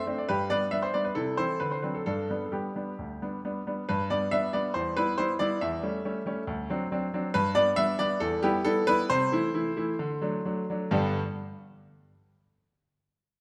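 In a rubato 4/4, this graceful, playful fragment of a classical-period sonatina features a clear, natural-sounding baby grand piano alone, up front with short sustain in a wet recital-hall reverb, slowing between 6.5 and 10.9 seconds before settling home as the passage is cut from the longer piece.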